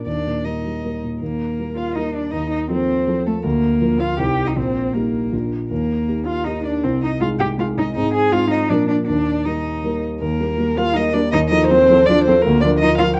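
A quick, graceful and cheerful classical-period movement for piano trio in three, cut from a longer piece, where a muted violin carries the veiled, vibrato-laden melody with soft attacks and a muted cello sings a second line with portamento, both close and up front over a mellow, deep-bassed concert grand accompaniment, all set in a moderate large-studio reverb with a dark, warm production.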